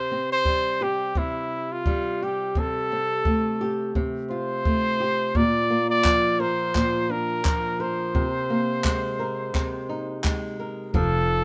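A close-miked trumpet with light vibrato carries the pop-style solo melody up front in this easy-going, sunny acoustic pop excerpt, set over a gentle sixteenth-note swing. A dark, fingerpicked flamenco guitar plays the accompaniment alongside, while a dry, compact cocktail drum kit adds handclaps and a punchy kick from 0.5 seconds. A woody, growly pizzicato upright bass enters only at 10.9 seconds as the chords arrive on F, all within a light reverb.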